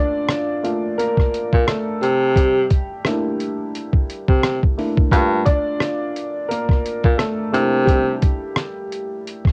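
A lazy 87 BPM groove with swung sixteenths drives this hazy, melancholic lo-fi hip hop fragment in G dorian, where a muffled, pitched-down sampler kit of hi-hat, rim click and thumpy kick sits up front with a tape-warm, compressed sound from 0.3 seconds. A worn, woody and slightly detuned upright piano, dulled by a low-pass filter and cassette grain, carries the whole passage as a solo, moving between a rootless Gm9 and C13. From 1.5 to 8.2 seconds a mellow baritone saxophone with subtone and vibrato supplies a vintage, jazz-style bass line, all wrapped in light reverb and the intimate sound of a home cassette recording.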